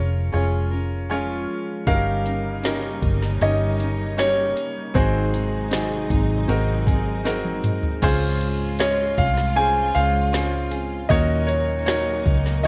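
A worn, warbling old-cassette sound with drifting pitch wraps this hopeful, heartfelt pop ballad excerpt, set in a moderate concert hall reverb. At 78 BPM in 4/4 with a straight feel in Db major, a smooth, vintage concert grand piano carries the melody, while a polished baby grand supplies accompaniment and a bright, full-bodied jumbo steel-string acoustic guitar picks arpeggios in the background. Underneath, a dark, round, foam-muted electric bass sits up front from the start. At 1.9 seconds a lush, bowed string section with vibrato joins softly on sustained chords, alongside a produced electronic R&B drum kit with a soft kick, woody snare and metallic hats re-recorded in a large room. A drum fill at 7.3 seconds leads into the second section, as the harmony moves from Bbm7/F through Eb7/G and Ab7 to Dbmaj7 and Ebm7.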